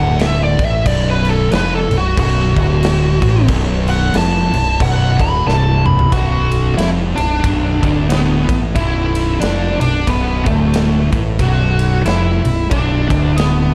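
A dark, warm production sits in a small room ambience, giving this stoner and doom metal excerpt a close, smoky weight. At 91 BPM in 4/4 with a swung eighth-note feel, the music moves at an ominous, heavy trudge in B minor. Up front, a compressed fuzz lead guitar solos through wah, distortion and tape echo, ranging from A3 up to B5 until 6.1 seconds. Beneath it, two thick fuzz guitars grind out a low riff, one shadowy in the background and the other a very quiet, warm layer, while an overdriven fingered electric bass growls up front with a direct, amped punch. The big acoustic rock kit, entering at 0.2 seconds, booms in a large room with bright cymbals, a medium-tuned snare and a punchy kick drum, and it plays a fill from 5.5 seconds into the next passage.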